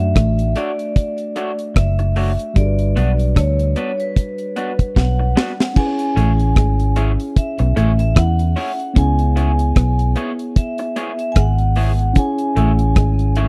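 A deep, dry reggae drum kit sits up front, with a high-tuned snare, a tight kick, rim clicks, hi-hat and crash cymbal, and a drum fill from 5.0 to 5.8 seconds. Beside it, a vintage foam-muted fingered electric bass carries a dark, round, punchy low end. Over this sweet, smooth lovers rock groove at 75 BPM in 4/4 with a swung sixteenth-note feel, a vibraphone played with medium hard mallets carries the melody in a metallic, ringing tone with slow motor vibrato, a boxy small-room sound and tape echo. A mellow, clean tine electric piano fills in the accompaniment through its built-in speakers. Two twangy, slightly broken-up electric guitars come through a small old amp: a fingered, compressed, lo-fi riff with tape echo, and picked stabs tucked in the background. The chords move from Dmaj7 and Gmaj7 to Amaj7 and C#m7 in this close, 1970s-style studio recording with studio reverb, cut from a longer piece.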